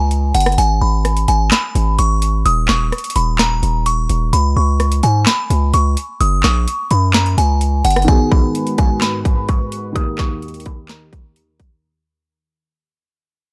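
Eerie and brooding, this short cut from a longer trap track sits at 128 BPM in a half-time feel, in G# minor with a dark, warm production and little reverb. A delicate, tinkling FM tine bell carries the melody high above the mix throughout, its bright tone softened by chorus, delay and a low-pass filter. Underneath, a heavy, aggressive distorted 808-style bass pushes up front until 8.1 seconds, while an overdriven trap kit of hard-clipped kick, sharp snare, metallic hi-hats, handclaps and rim clicks drives the whole piece. At 8.1 seconds the second section begins with a filter sweep and fade-out. A boxy, intimate baby grand piano enters just before this, at 8.0 seconds, its action noise audible, and a warbling, nostalgic lo-fi pad of detuned sawtooth and triangle tones joins at 8.6 seconds. The chords move from a brief F#5 to G#m, then through D#5, C#5 and F# before settling on G#m7 and D#.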